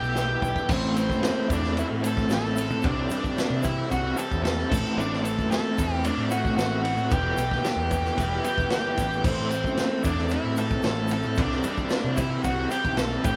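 An up-front octave-fuzz lead guitar, dark and distorted, carries the melody through this hypnotic, trippy psychedelic rock passage cut from a longer piece. Beneath it, an electric guitar through a small old amp plays a slightly broken-up, lo-fi riff with tremolo, while a punchy fuzz picked bass adds overdriven grit. A vintage drum kit enters at 0.2 s with a short fill before settling into a straight 4/4 feel of kick, snare, ride and crash, its cymbals dark and its top rolled off. A swirling phased string machine holds very quiet sawtooth chords, alongside a shimmering, buzzing tanpura drone that stops at 7.5 s. A grainy tube shaker sits close and dry in the background, and the band sounds live in one room with light reverb as the chords cycle through Em, Am and C.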